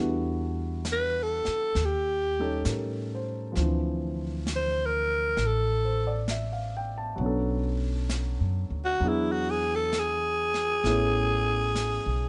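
Romantic and late-night in mood, this short cut from a longer jazz ballad moves at a slow 66 BPM in 4/4 with a gentle swing on the eighth notes. A growling alto saxophone carries the melody from 0.9 seconds, its close-miked tone breathy and raspy with a soft attack, light vibrato and a subtone grit that sits up front. Underneath, a dark, mellow concert grand piano supplies the accompaniment with a deep bass register, while a woody pizzicato upright bass on steel strings holds the low end from the very start. A vintage brush kit enters at 0.8 seconds, with brushed snare and hi-hat sounding small-room and rolled-off at the top, set well back in the mix. The harmony drifts from Em7 through Eb7#11, Dm9, Bm7 and E9 before settling on Amaj9, all captured dry and intimate with little reverb and a softened upper range.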